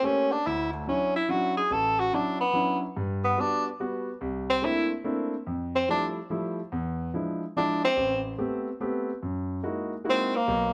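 Jazz waltz in G major at 144 BPM with a swung 3/4 lilt and a sophisticated, warm mood, where a clear tenor saxophone carries the melody with light vibrato, scooped notes and roomy plate reverb over a smooth, vintage grand piano accompaniment through rich chords such as Dmaj9, C13, E7b9 and F#13, the two sharing a moderate studio ambience for the whole 10.7-second excerpt.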